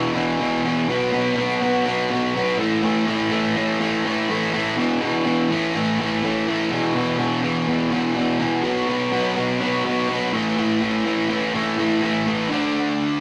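Swaggering and driving, this rock passage moves at 124 BPM in a straight 4/4 and is cut from a longer piece. A lone overdriven electric guitar carries the whole 13.2 seconds, its dark, picked tone double-tracked and placed up front. The part ranges from E2 to D4 and works through power chords, circling E5, B5 and A5 before landing on D5 at 12.5 seconds. The guitar sits in a wet small room with a short 0.5-second reverb. The rough rehearsal-room capture adds warm saturation.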